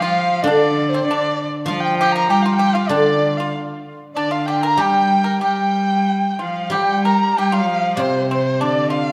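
Wistful and graceful, this short excerpt from a longer Chinese traditional piece for chamber ensemble moves in a free, rubato 4/4 around 96 BPM in the G yu mode, tuned slightly high at A4 = 443 Hz. A mellow large dizi carries the melody from the start, its bamboo tone pure and softly attacked, with a buzzing membrane, vibrato and a distant, unsteady quality. Alongside it in the same register, a dark, close erhu adds an expressive second line with vibrato and portamento, while the pipa, picked with fingerpicks, contributes a dry, percussive line in a lower register. A rich, reedy cello with a gut-string, period-style tone and light vibrato sits up front as another second line, and the guzheng joins at 0.4 seconds with bright, silvery, ringing accompaniment in the same low range. The ensemble sounds through a wet scoring-stage reverb, and the opening section gives way to a new one at 6.7 seconds before the cut at 9.1 seconds.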